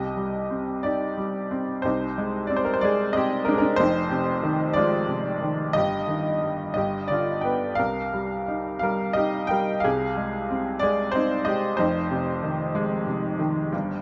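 A bright, slightly detuned upright piano with a worn, woody tone and audible action noise plays a wistful, melancholic classical solo in a rubato 6/8 at around 57-63 BPM, moving through Cmadd9, Ab/C, Fm7 and a G7 that returns to Cm7, recorded up close with intimate detail, long sustain and light reverb in this 14-second passage cut from a longer piece.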